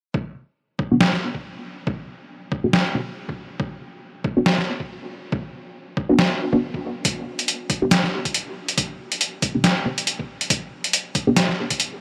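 Heavy and dark, this deep dubstep piece at 139 BPM in B minor moves with a swung half-time feel: a gritty, pitched-down electronic kick thumps up front from 0.1 seconds, a muted, detuned sawtooth-and-square dub chord stab with a sub octave, phaser, lush chorus and dub echo shifts from Bm to G at 7.0 seconds, and a tape-warm, compressed trip hop sampler-style kit of hi-hat and medium-tuned snare sits close in a small room, the whole mix bathed in light digital ambience.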